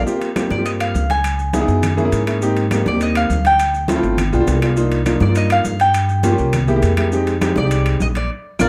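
A picked mandolin carries the melody in this sunny, danceable Afro-Cuban jazz excerpt, its round double-string tone set in a plate reverb. An up-front grand piano with a natural, warm sound supplies the accompaniment, moving through rich jazz chords and adding a short fill at 4.2 seconds. A woody pizzicato upright bass on steel strings sits up front with the piano, anchoring the fast, straight 4/4 groove. Behind them, ringing congas played with soft hands, grainy, mellow maracas and dry, close claves sit in the background, while metal-shell timbales ring from a distant, large room. The whole band plays in a moderate club reverb and closes on a shared accent at 8.3 seconds, joined by a drum fill.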